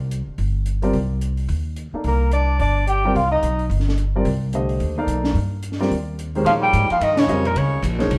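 This cool, spiritual modal jazz excerpt opens with woody pizzicato upright bass, joined almost at once by a compact cocktail kit of hi-hat, ride and high-tuned snare with dark cymbals, and at 0.8 seconds by a natural-sounding grand piano accompanying over Cm9 in C dorian at a swung 218 BPM. From 2.1 seconds a breathy, whispered soprano saxophone with vibrato and scooped notes carries the melody, with a buzzy, thin trombone in a metal mute playing a second line. The trombone re-enters at 6.4 seconds, just ahead of the saxophone, which returns as the harmony moves to Bbm9 at 6.5 seconds, and a band accent follows before the recording cuts off, all played live together in a moderate stone room.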